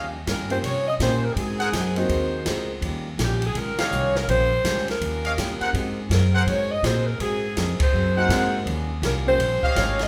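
A swung 4/4 pulse at 164 BPM drives this energetic, joyful big band swing cut in Eb mixolydian, with a woody pizzicato upright bass up front and an open jazz drum kit of dark cymbals and a boomy kick beneath a tight, bright saxophone section that carries the melody from 0.3 seconds. A clear trumpet section adds vibrato-tinged stabs with a soft attack, the band hits accents at 3.7 and 7.8 seconds, and the harmony moves between Eb9 and Ab9. A full-bodied picked dreadnought acoustic guitar supplies accompaniment alongside a warm upright piano with long sustain in the background, heard in two stretches, all set in a moderate large studio reverb.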